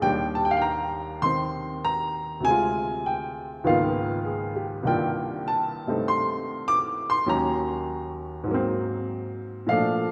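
Solo jazz piece at 99 BPM in 4/4 with a swinging eighth-note feel, taken from a longer work and carrying a sophisticated mood. A woody upright piano plays alone and up front from C2 to D6, its notes short in sustain, moving through rich harmony from Ebmaj7 and Dm7b5 to Db13, Cm11, Ebm7 and Ab9. A lush, reverberant hall surrounds the instrument, with a tail of 2.1 seconds lending spacious depth.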